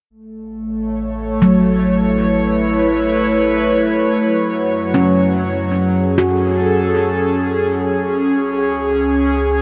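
Bathed in a huge, long-tailed reverb, this brief, serene ambient excerpt sets an airy, breathy pad with chorus up front over a round analog bass that fades in throughout, while a mellow handpan played with soft fingertips rings out arpeggios through a diffuse delay from 1.4 s to 8.9 s as the harmony moves from A to F#m to C#5.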